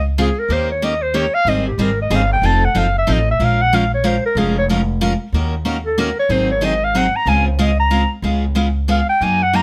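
A swung waltz feel in three drives this short cut from a longer piece of acoustic string swing in the gypsy-jazz style, with a bittersweet, swinging mood. A mellow clarinet carries the melody as a jazz-style solo throughout, sitting up front with vibrato, scooped notes and a smooth top. The upright bass anchors the low end with pizzicato gut strings, its tone woody, dark and thumpy. A picked steel-string acoustic guitar joins at 0.2 s to accompany, bright with fresh strings and an audible finger squeak. The harmony moves through seventh chords such as Eb7, Abmaj7 and Dbmaj7 across two matching sections, and light reverb gives the trio a sense of space.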